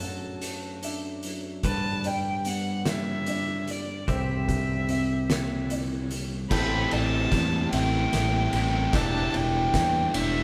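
Cinematic and cathartic, this post-rock passage in a slow 6/8, cut from a longer piece, unfolds as a band playing live in one stone room with moderate reverb. A dark, woody violin carries the melody with vibrato and sul tasto bowing, sitting close and up high. A growling fingered electric bass with overdrive anchors the low end, while an oversized low-tuned drum kit sounds punchy and gritty up front, with a fat snare, dark cymbals and a pumping room. In the background, a pedal steel guitar holds clean sustained chords with fingerpicks, slide and volume swells. Alongside it, an electric guitar through a small old amp picks slightly broken-up arpeggios, and a felt-muted upright piano adds boxy, intimate arpeggios with audible action noise. At 6.5 seconds a sludgy, overdriven guitar riff enters as the music builds on a drum fill through minor seventh chords until the end at 10.4 seconds.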